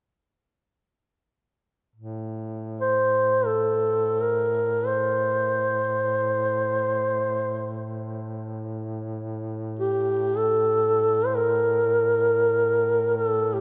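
Mournful and full of longing, this Caucasian folk lament unfolds in free time in A Phrygian, cut from a longer piece. A warm duduk opens at 2.0 seconds, holding a low drone on A2 with vibrato and scooped notes. At 2.8 seconds a dark, close-miked duduk enters up front with the melody, moving between G4 and C5 with a vibrato-laden folk style. The drone sits well beneath the lead line, which carries the sorrowful character of the music. A wet church reverb with a long 3.5-second decay surrounds the two parts until they stop at 13.6 seconds.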